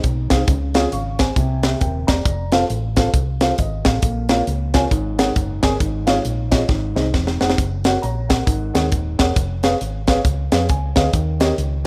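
A tight, up-front funk drum kit drives this short cut from an uptempo gospel piece, its high-tuned snare, tight kick and hi-hat sitting mid-forward in a small room at 135 BPM in 4/4 with a light swing on the eighth notes. Beneath it, a hollow-body short-scale electric bass, fingered and amped, gives a round, dark tone in the low register. A mellow, boxy grand piano carries the accompaniment across a broad range, moving through a reverent, uplifting progression in Db major that passes through Bbm, Ab9sus4 and Db/Ab before landing on Eb7. The drums break into a fill at 6.7 seconds, and the piano adds its own brief fill at 10.5 seconds. Light reverb and small-room ambience give the whole a rough home-demo feel.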